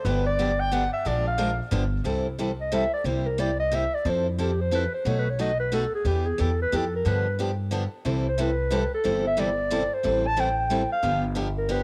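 Swinging at 180 BPM in 3/4, this playful excerpt of acoustic string swing in C major opens with a punchy, forceful clarinet with vibrato and scooped notes until 1.6 s, over a woody, thumpy pizzicato upright bass on gut strings and a bright picked steel-string acoustic guitar that play throughout. From 2.6 s a dark subtone clarinet with light vibrato, scooped notes and a smooth top carries the melody, with the guitar and first clarinet carrying a cassette-tape grain inside the moderate spring reverb of a home recording.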